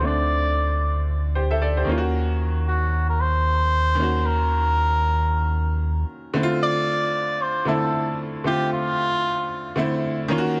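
A cup-muted trumpet carries a veiled, jazz-style melody through a filtered delay over brilliant, short-sustained grand piano accompaniment and a deep sine sub bass that falls away at 6.0 s, giving this late-night, hypnotic amapiano excerpt its swung 16th-note sway between Dm7 and Ebm7 in a small, lightly reverberant room.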